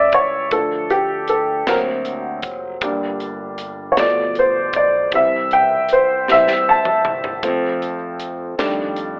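Soulful and reverent, this slow gospel fragment in a straight 6/8 is led by a woody, slightly detuned upright piano that plays solo throughout, up front and intimate with its action noise audible. A bright, punchy fingered electric bass sits low beneath it, while a crisp, polished drum kit with a high-tuned snare and tight kick supports the chords and plays a fill from 6.3 to 7.4 seconds before the harmony settles home on an F13. A large studio reverb adds space, and a telephone-like coloring gives the whole mix a filtered character.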